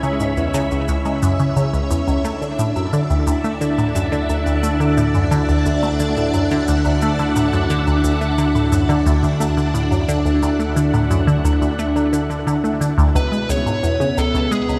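A straight 88 BPM pulse in 4/4 drives this expansive, hypnotic slice of sequencer-driven space music, where a squelchy, resonant blip pluck riff with phaser and analog delay sits up front over lush string machine chords and a warbling analog drone bass, cabasa and woodblock tick faintly through their own delay, the harmony moves from C#m7 to Dadd9, a dark, overdriven lead guitar melody enters at 13.2 s, and a huge ambient reverb surrounds it all.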